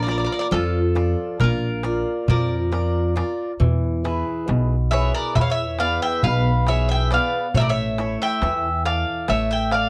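This short section of a Greek folk piece opens with the full string band at once: a metallic, double-strung bouzouki carrying the melody up front, with some strings doubled at the octave, over a bowl-back mandolin playing a softer second line. A boxy, picked acoustic guitar supplies swing-style accompaniment up front, with finger squeaks audible, while a woody, dark upright bass on steel strings is plucked pizzicato and sits prominently in the mix. A crisp, metal-shelled darbuka joins at 0.1 s and plays to the end. The tune moves in a 9/8 metre at 137 BPM counted in eighths with a straight feel, and the harmony shifts from Bb to E at 3.6 s and settles on A at 7.5 s. The mood is dark and wistful, captured in a dry, close studio sound with a 1970s character and little reverb.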